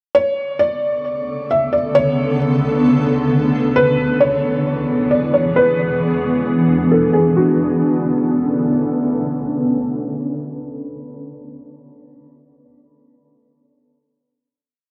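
Hazy and ethereal, this short atmospheric cloud-rap piece in B dorian moves at a half-time 133 BPM, with a muted, intimate felt upright piano looping a sparse delayed melody from 0.1 s to 8.7 s over a blurred, detuned granular cloud pad that enters at 1.3 s and sustains chords from Bm9 through C#m7 and E7 back to a final Bm9 at 7.4 s, all bathed in a dark, filtered production with a long shimmering reverb.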